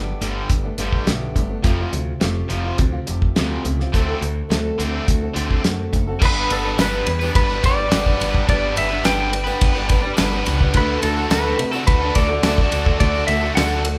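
A straight 4/4 groove drives this folk rock and heartland rock piece, which has a warm, nostalgic mood and the sound of a band playing live in one room with light reverb. A cloth-damped, thuddy drum kit sits up front with a fat snare, tight kick and rolled-off top, paired with a modern, growly picked electric bass that is punchy and direct. A crunchy, double-tracked overdriven guitar carries the riff, while an old ladder-braced acoustic guitar, dark and boxy with woody old strings, picks out the accompaniment beneath it. The chords move from Gadd9 through Fadd9 to D7, then settle onto G at 6.2 s, and a twangy, compressed lap steel enters at 6.3 s with a clean slide melody. A very quiet, jingly tambourine arrives at 6.5 s, and the harmony shifts to D before the cut.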